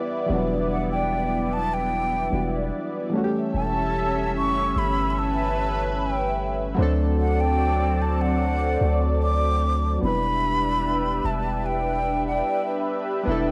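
A breathy concert flute carries the melody up front from 0.7 seconds, expressive and tongued with vibrato and lifted highs, over a moody, late-night contemporary R&B groove in E minor at a straight 74 BPM. Beneath it, a lush, thick, detuned unison pad holds bright sustained chords with chorus and phaser, while round analog keys with a filter sweep and chorus supply the accompaniment, both softened by cassette tape. A deep, mellow 808-style bass enters at 0.3 seconds with long, decaying sine notes as the harmony moves from Em7 through A7/E and D7 back to Em7, all in a light-reverb home cassette recording cut from a longer piece.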